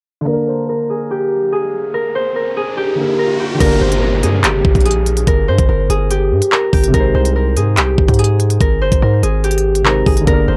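A dark concert grand piano opens this excerpt at 0.2 s, its mellow chords sinking into a deep low end behind a low-pass filter. A fingerpicked concert harp follows at once with a ringing, acoustic melody in G phrygian, sitting up front and trailed by tape echo, while a filter sweep runs over the opening bars and an electronic riser builds tension beneath it. At 3.6 s the drill groove arrives at 144 BPM in a half-time 4/4 feel, pairing a knocking kick, crisp hi-hats, handclaps and crash cymbal with a heavy, distorted 808-style bass that hits with a fast attack and a noisy, aggressive edge before decaying. The harmony holds on G minor and moves to A-flat at 6.9 s, deepening the dark, tense mood. The whole track has a dry, gritty cassette-tape character with little reverb, and the drums, bass and harp all sit up front in the mix.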